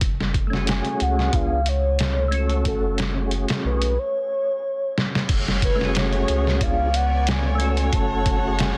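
A pure, breathy sine lead carries the melody from 0.7 seconds in this brooding, melancholic trip hop piece at 91 BPM in 4/4, set in F# harmonic minor and tuned to A4 = 435 Hz. Its gliding, warbling tone is colored by analog chorus and tape echo. Underneath, a deep, round sub bass sits up front beside a muffled, pitched-down sampler-style drum kit with a thumpy kick, medium-tuned snare, hi-hat and crash, re-recorded in a small room. A mellow, dark tonewheel organ with third harmonic percussion plays accompaniment through chorus vibrato, slow rotary speaker, tremolo and tape echo, as the harmony moves between F#madd9 and C#7b9 with a brief pause in the chords. A drum fill at 5.0 seconds leads into the second section, where a lush, warm studio violin section enters at 5.3 seconds with expressive, bowed sustained chords, vibrato and vintage 12-bit sampler grit. Digital ambience surrounds the mix, which has a dense, heavily limited modern master, and the passage is cut from a longer piece.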